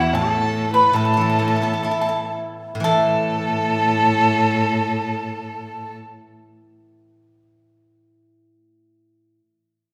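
In a free, rubato 2/4 that drifts between 54 and 78 BPM and slows through the first 2.9 seconds, this festive, graceful Chinese traditional chamber excerpt sets a mellow large dizi on the melody, its pure, buzzing bamboo tone distant in the background, while a rich erhu with light vibrato and portamento sits up front beside a clear, focused cello and a dry, percussive pipa. Beneath them a steel-string zither plucked with fingerpicks supplies silvery, ringing accompaniment. The other parts stop around 6 seconds and the zither carries on alone until 9.4 seconds, all within the wet reverb of a recital hall.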